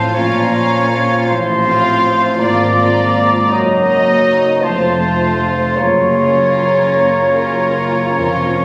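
A short, elegiac classical passage cut from a longer work opens with most of the ensemble already sounding, the violins carrying a dark, intimate melody played sul tasto with light vibrato and a soft attack, while a second violin line sits distant and very quiet beneath it. Around them, a silver flute, warm oboe and clear clarinet trace background lines, the bassoon adds a mellow accompaniment, and a very quiet French horn section holds tight sustained chords as a warm trumpet places stabs in the background. The viola section murmurs an accompaniment while cellos and a rich, floating double bass section anchor the bass, all bowed sul tasto. In a slow, rubato 6/8, the harmony moves through shadowed minor chords before settling on a major seventh, giving the passage a solemn, mournful weight. Timpani struck with soft mallets enter only at 8.2 seconds with a round tone, and the whole is heard through moderate scoring-stage reverb with a compressed, room-captured sound.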